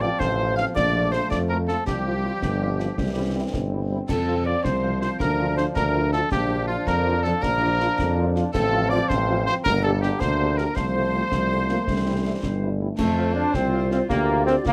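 Close, detailed microphones in a moderate studio room give this short cut from a longer wind band march a clean, immediate sound. In a proud, festive mood, it moves at 108 beats per minute in a straight 6/8 in F major. A warm, lightly vibrato cornet carries the melody up front, joined by a brilliant woodwind section playing a second line. A mellow French horn section fills in the accompaniment from the background, while a tight trombone section holds sustained chords over a clear, prominent tuba bass. Concert snare drum, concert bass drum and gleaming clash cymbals drive the march from 0.2 seconds, and a smooth-topped euphonium joins with its own second line at 11.3 seconds.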